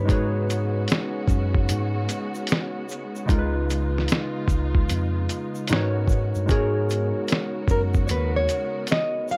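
A hazy, nostalgic lo-fi hip hop excerpt at 75 BPM in G# dorian, built on a thumpy, pitched-down sampler drum kit and a mellow tine electric piano bass up front, with a dark, fingerpicked nylon-string guitar melody, detuned analog keys with chorus, a lush bowed string section, and a grainy tube shaker in the background, all moving through G#m7, C#9 and G#m11 in light reverb.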